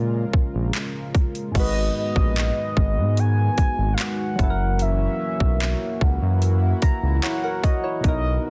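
A sensual, late-night contemporary R&B piece at 74 BPM opens on a mellow, horn-like synth lead with chorus, delay, vibrato and portamento, over soft, round electric-piano-like keys with a vintage warble, a shimmering, retro pulse-width pad that pumps with sidechain compression, and a smooth, saturated synth bass sitting up front. An electronic trap kit arrives at 0.3 seconds, its hard-clipped kick, metallic hi-hats, handclaps and crash cymbal overdriven and placed prominently forward. From 1.6 seconds a delicate, bell-like celesta adds a very faint, sweet ringing texture in the lead's register, as the harmony moves from A#m7 to G#m7 and then F#7. The keys step forward with a fill at 6.4 seconds before the passage, cut from a longer piece, draws to a close. The sound is dry and close, with a dense, heavily limited modern master.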